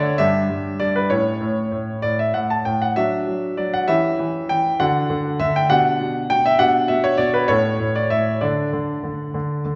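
A clear, smooth grand piano with a vintage character plays alone and up front from the first moment of this playful, graceful classical-period sonatina excerpt in D major, moving in 6/8 at 66 dotted-quarter beats per minute through G5, A, D/F#, C#dim/E, D, G/B and A before arriving on D5 at 8.4 seconds, set in a wet recital hall reverb with a 1.8-second decay.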